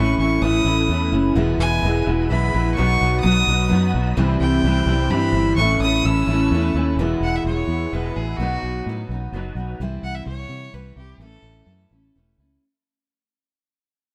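Hopeful and warm, this folk rock and heartland rock passage in 3/4 is cut from a longer piece. It rests on a full-bodied dreadnought acoustic guitar with audible finger squeak, a round, foam-muted electric bass sitting up front, and a slightly broken-up, lo-fi electric guitar riff through a small old amp with ensemble chorus. An earthy, distant fiddle with light vibrato and digital delay carries the melody, while a very quiet, lightly overdriven tonewheel organ on slow rotary speaker holds sustained chords from 1.4 to 7.0 seconds, when the fiddle takes a solo as the music fades out beneath a dark production with light reverb.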